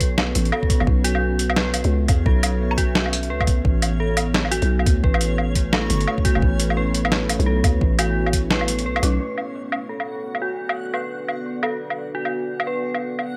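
Spacious and cinematic, this half-time drum and bass cut in B minor moves at 173 BPM with a swung sixteenth feel, built on a deep, moody pad with chorus, reverb and sidechain pumping, eerie FM bell arpeggios colored by tremolo and tape echo, and a bright, dreamy reversed texture swelling in the background. A gritty, pitched-down boom bap sampler kit of hi-hat, snare and woodblock sits up front beside a knocking electronic kick and a growling, buzzy 808-style bass. The kick drops out at 8.5 seconds and the bass stops at 9.2 seconds, leaving pad, bell, texture and sampler drums to carry the closing passage over a B minor chord.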